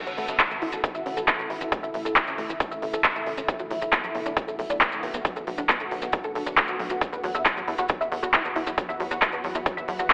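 Uplifting trance at 136 BPM in A major, this short excerpt carries a soaring, uplifting mood over a steady 4/4 pulse, moving from A to Bm7 to Esus2. A tight, driving sequenced synth plays detuned sawtooth and triangle arpeggios with a filter pluck and fast attack, colored by chorus, phaser, 12-bit sampler grit, digital delay and sidechain pumping, while a filter sweep runs across its sound throughout. Beneath it, a nasal sequencer bass blends sawtooth and square waves into punchy, decaying plucks that also pump with the sidechain. A big-room dance drum kit with handclaps and crisp hats sits up front alongside a punchy, tape-tinged electronic kick that enters at 0.4 seconds, both layered and re-recorded in a large room. Grainy, mellow maracas, close and dry, add texture, and the whole mix is bathed in a lush hall reverb with a narrow, telephone-like tone.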